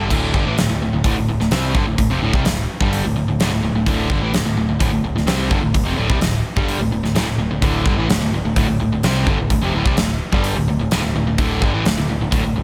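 Aggressive and driving, this hard rock excerpt at 128 BPM sets a bright cranked stack guitar and a warm overdriven electric guitar each on a low riff over a D5 chord, backed by a growly, punchy picked electric bass and a huge arena drum kit whose fat snare, punchy kick and bright cymbals sit up front in a small room with light reverb, all running from the start to about 12.6 seconds.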